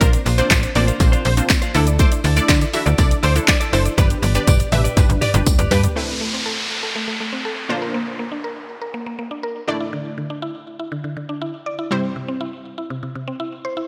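A punchy, layered house drum kit sits up front in this bittersweet, energetic dance-pop excerpt at 121 BPM, driving the opening drop with kick, snare, handclaps, hi-hat, shaker and toms, then rolling into a drum fill at 4.0 seconds. Beneath it, a snappy slap-like FM bass with a metallic attack pumps against the kick. Above, a catchy, full-bodied unison lead carries the melody through a phaser and digital delay. A lush, detuned sawtooth pluck and a woody, round mallet-like synth pluck with chorus and delay lay down pumping accompaniment and arpeggios, while a clean, direct-recorded electric guitar riff sits in the background beside a very quiet, jingly tambourine. At 6.0 seconds the drums stop, and the two plucks continue over a downlifter through chords moving from Amadd9 through Bbadd9 and Dsus2 to C, all within a bright 1980s-style digital production with light reverb.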